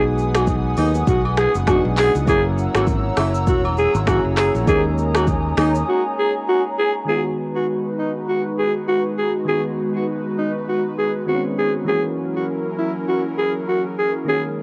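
A lightly reverberant home cassette recording captures a mellow, smooth afrobeats excerpt in G# minor at 100 BPM with swung sixteenths, where a raspy, up-front alto saxophone with vibrato carries the melody over round, detuned electric-piano-like synth keys and an airy, nasal pad, both chorused, while growly fingered electric bass, an afro-pop kit with deep kick, crisp hats, snaps, claps, rim clicks and shaker, and background agogo bells and woodblock drive the groove until about 5.9 s, after which a brief silent gap gives way at 7.1 s to a second section moving through G#m7, B6 and F#7 chords.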